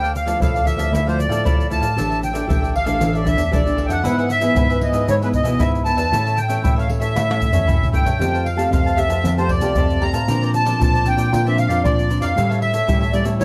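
A moderate studio reverb surrounds this bittersweet, yearning samba and choro excerpt at 115 BPM, where a reedy, sweet accordion with light tremolo tuning carries the melody up front over crisp, mellow picked cavaquinho, bright fingerpicked classical nylon-string guitar, a bell-like tine electric piano playing a clean, direct bass line, and close, hard-handed tube shaker, pandeiro, tight surdo and tamborim, with a drum fill at 7.2 seconds as the chords move from Dmadd9 toward A7.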